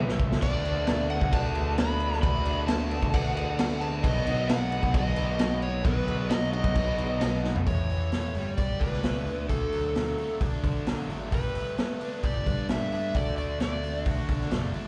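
Heard through a club PA with light reverb, this classic rock excerpt has a raw, live-gig feel, driving and confident at 132 BPM in a straight 4/4. A raw garage drum kit sits up front, its punchy kick, medium-tuned snare, hi-hat, toms and crash carrying a saturated, gritty, rolled-off sound in a small pumping room, with fills marking the opening and a turn around 7.4 seconds. The fuzz picked electric bass is just as forward, overdriven and punchy, while a double-tracked distorted electric guitar churns out a bright riff in the background with slapback echo. On top, a dark, overdriven slide guitar carries the melody with its own slapback echo, playing until 14.0 seconds. For the first half, a detuned, jangly honky-tonk upright piano adds very quiet accompaniment and a shouting tonewheel organ with key click and rotary speaker holds barely audible chords, both dropping out at 7.6 seconds as the harmony shifts from D6 and B to a second section built on A, Gadd9 and D.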